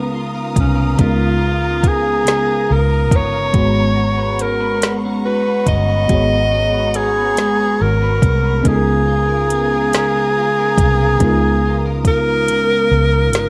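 A dark, reverberant mix frames this sultry, yearning slow R&B piece in six-eight, where an up-front tenor saxophone with subtone, vibrato, scooped notes and slapback echo carries the melody over a chorused, warbling FM electric piano, a clean picked electric guitar tucked in the background, lush bowed strings, a round foam-muted fingered bass and a soft, woody electronic drum kit that enters at 0.6 seconds and plays a fill from 12.5 seconds, as the chords move from C#13 to G#m11 and back.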